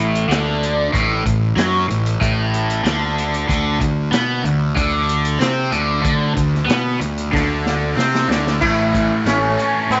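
A bright, double-tracked guitar riff, overdriven and phased, leads this hypnotic, hazy psychedelic rock excerpt at 94 BPM, over a punchy fuzz bass and a vintage acoustic drum kit with dark cymbals that plays a fill at 7.3 seconds, before a buzzing, shimmering sitar with slapback echo enters at 8.6 seconds, set in a small room with light reverb.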